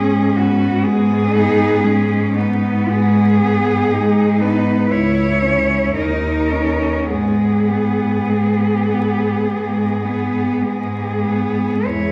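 Four bowed cellos open together in a solemn, yearning classical passage in G# minor, moving freely at a slow 46-62 BPM: a rich, expressive lead sings the melody with vibrato and portamento, over a soft-attacked bass cello that sits up front. Two clear, focused cellos fill the middle, one carrying a second line and the other playing accompaniment in the background, as the harmony drifts from G#m through C#m and D#5 before returning to G#m at 7.1 seconds. The ensemble is heard from further back in a reverberant recital hall, with vinyl crackle over this fragment of a longer piece.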